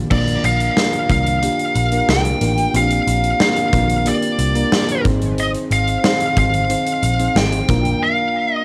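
A distorted, high-gain lead guitar carries the melody up front, its dark picked tone treated with plate reverb and analog delay over a cassette-tape haze, in this uplifting, glossy 1980s-style pop excerpt. Soft, round electric-piano-like synth keys with chorus fill out the harmony above a foam-muted, amped electric bass, while a huge arena drum kit with a punchy kick and medium-tuned snare drives the straight groove. The bass drops out at 7.9 seconds and the drums at 8.0, leaving keys and guitar to ring through the closing break, all captured as a home recording in a booth.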